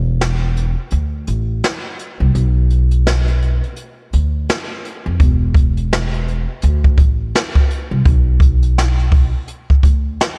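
A brushed jazz drum kit with an airy, polished small-room sound, a boomy kick, a medium-tuned snare, hi-hat and vintage 12-bit sampler grit sits up front beside a woody pizzicato upright bass on steel strings, driving this tough, dry boom-bap hip-hop excerpt at 84 BPM in 4/4 with a 59% swing on the 16ths, opening on a break that runs to 5.2 seconds.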